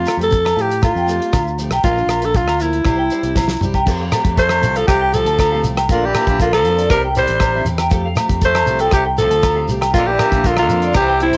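A breathy alto saxophone carries the melody up front from the first moment, over a bright, full-bodied steel-string acoustic guitar picking an accompaniment in the background and a round, punchy fingered electric bass. This sunny, danceable highlife guitar band excerpt moves at 119 BPM in a straight 4/4 in F major, cycling through Fadd9, Bb and C. Almost at once a damped 70s drum kit joins with a fat snare, tight kick and dark cymbals, alongside ringing agogo bells, a grainy shekere sitting close yet in the background, and a twangy, slightly broken-up electric guitar playing arpeggios through a small old amp with tremolo and analog delay. A drum fill at 3.4 seconds leads into the second section, where a raspy tenor saxophone enters at 4.4 seconds with a gritty second line set back in the mix. Both saxophones have vibrato and scooped notes, and the horns and guitars carry plate reverb and a cassette tape colour, giving the piece a home-recorded character.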